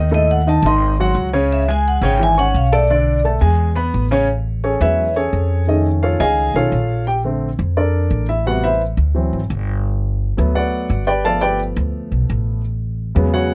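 Jazz at a brisk 172 BPM in A major, danceable and sophisticated, captured dry and close in this short excerpt from a longer piece. A ringing, metallic vibraphone with slow motor vibrato carries the melody from 0.1 to 3.2 seconds over chords such as G#7b9 and C#m7. A warm, intimate upright piano with audible action noise then takes the solo from 4.3 seconds through rich harmonies like Amaj13, F7alt and Bbmaj9, while a dark, thumpy pizzicato upright bass on gut strings sits up front throughout.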